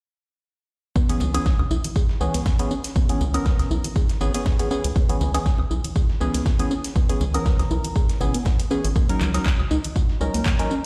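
A swung deep house groove is driven by an overdriven, up-front electronic kick, with a tape-warm analog drum machine adding handclaps, hi-hat and woodblock, a gritty sampler-style soul kit supplying high-passed snare, hats and tambourine, and very quiet, close, dry congas. A rubbery, bouncy square bass sits beneath a mellow, phased organ stab and a soft, round pluck playing background arpeggios that carry a filter sweep throughout. The deep, warm mood rests on a C#m7 chord that moves to D#m7 at 9.0 seconds, with sidechain pumping on the pluck and organ and a large studio reverb around the whole fragment.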